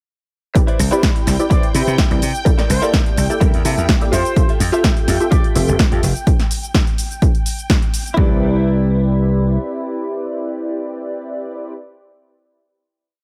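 Filtered disco house at 126 BPM in C major, feel-good and joyful, built on a tape-warm four-on-the-floor kick and a punchy drum machine whose pumping hats, shaker and snare back a bright, tube-saturated slap bass playing a funky syncopated line, while a clean, scooped guitar riff with analog chorus, dark detuned sawtooth polysynth chords with chorus and phaser, and a swirling vintage string machine holding a high note in the background all pump together, as a mellow, distant trumpet section adds short phrases with light vibrato and delay from 1.5 to 5.5 seconds before the drums drop out around 8.2 seconds and a final Cmaj9 chord closes the piece.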